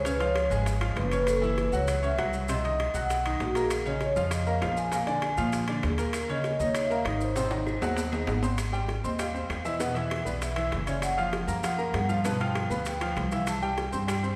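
Soft-mallet vibraphone with a mellow, airy ring and slow motor vibrato carries the melody through this sunny, lively Afro-Cuban jazz excerpt at 197 BPM, over clear, up-front baby grand piano chords and a dark, thumpy pizzicato upright bass on gut strings, while tight high-tuned bongos, metal-shell timbales and distant woody claves sit in the background alongside grainy saturated maracas, a drum fill at 7.4 seconds leads into a vibraphone solo at 8.6 seconds, and the whole ensemble sits in a reverberant church-like hall.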